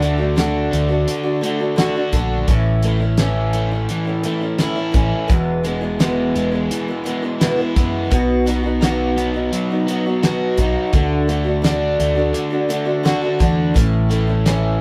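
Hopeful and open-road in spirit, this excerpt of folk rock and heartland rock moves at a straight 85 BPM in 4/4, cycling through D, A, E and B across roughly 15 seconds. A boxy, ladder-braced acoustic guitar picks its accompaniment up front beside a bright, crunchy overdriven electric guitar, double-tracked and carrying the riff, while a round, dark hollow-body bass played with the fingers sits underneath. A damped 70s drum kit with a fat snare, tight kick, hi-hat and rolled-off top drives the band, which plays live together in one room under moderate studio reverb.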